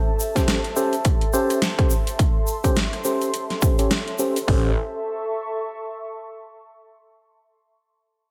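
Swung sixteenths at 105 BPM drive this swaggering, playful glitch hop fragment in A minor pentatonic, where a punchy kick, huge snare, rim clicks and metallic hats sit up front beside a grainy egg shaker and mellow tine electric piano stabs carrying 12-bit grit under a filter sweep and diffuse delay, all over a warbling, nostalgic tape-like pad with chorus and sidechain pumping, until a swirling, saturated detuned saw bass lands briefly on A1 at 4.5 seconds as the harmony moves from A7#9 to A and the pad rings on alone in a dreamy, reverb-soaked hall until 6.7 seconds.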